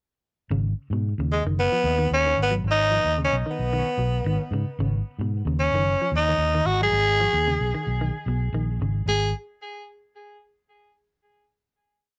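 Funky, driving afrobeat at 112 BPM in G# dorian, built on a single G# minor groove where a round, amped fingered electric bass with transformer saturation plays an up-front syncopated riff beneath a clean, hollow-body semi-hollow guitar whose cassette-tinged arpeggiated ostinato sits in the background, while from 1.3 s a raspy, gritty tenor saxophone, close-miked with vibrato, scooped notes, cassette tape and tape echo, leads with pop-style motif-based call phrases until the groove resolves into a final note at 9.1 s, all in a moderate studio reverb on a home cassette recording.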